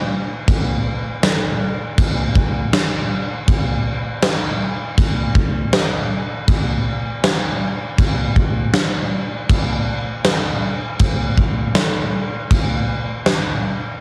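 Rock at 80 BPM in a straight 4/4, carrying a wistful, dreamy mood despite being built from drums alone. A huge arena drum kit plays from 0.5 to 13.4 seconds, sounding acoustic and up front, with a punchy kick, a medium-tuned snare and crash cymbal. The kit itself suggests a big room, yet the overall recording stays dry, with little reverb around it. A cassette tape character colours the drums, and the home recording on cassette gives the sound a lo-fi, homespun grain. This short cut is taken from a longer piece and stays within a single section.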